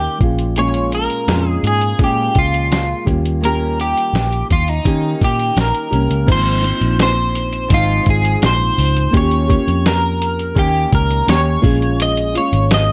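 An electric guitar at the edge of break-up carries the melody up front, its picked, slightly broken-up tone compressed and coloured by analog chorus and a slapback echo. Beneath it, a small, fingerpicked nylon-string guitar adds accompaniment with chorus and a warbly pitch drift, while a reedy, worn electric piano sits in the background, slightly out of tune through built-in speakers with a cassette-tape character. A picked electric bass, amped, round and foam-muted, stays up front alongside a lo-fi sampler-style drum kit that enters at 0.2 seconds. The kit is muffled and re-recorded in a small room, with a thumpy kick, medium-tuned snare, hi-hat and crash cymbal. This hazy, mellow indie and bedroom pop fragment moves in a straight 4/4 through Bbm7, Eb7 and Ab6 chords, shifting into a second section at 6.3 seconds, all under light reverb and a dark, warm production.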